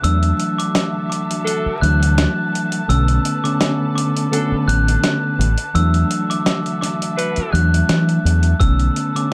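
Vinyl crackle and a light reverb frame this gritty boom-bap hip-hop clip, cut from a longer piece and moving at 84 BPM in 4/4 with a lightly swung sixteenth-note feel. Up front, a compressed, sampler-style soul drum kit supplies a thumpy kick, a medium-tuned snare and hi-hat with a tape-warm, dusty character, joined by a deep, dark and round fingered dub bass that drops out at 8.9 seconds. A mellow, clean tine electric piano carries the accompaniment through its built-in speakers, while a lush, bowed studio string section quietly holds smooth sustained chords beneath. On top, a bell-like glockenspiel struck with hard plastic mallets rings out the high melody in a boxy small room, trailed by tape echo. Between 1.4 and 7.6 seconds a bright, punchy, close-miked saxophone section adds stabs with light vibrato, and the whole tough passage alternates between E9sus4 and Bm9.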